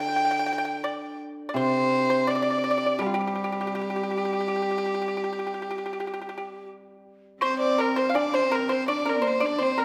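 An up-front erhu with light vibrato and portamento sings the graceful, wistful melody over dry, fingerpicked pipa and a shimmering, ringing hammered dulcimer in this rubato Chinese traditional chamber piece at 83 BPM in G yu mode, where the dulcimer falls away at 5.2 seconds and at 7.4 seconds a husky horsehead fiddle, a distant, mellow bamboo xiao and a very quiet, close woodblock join in, all framed by a moderate scoring-stage reverb.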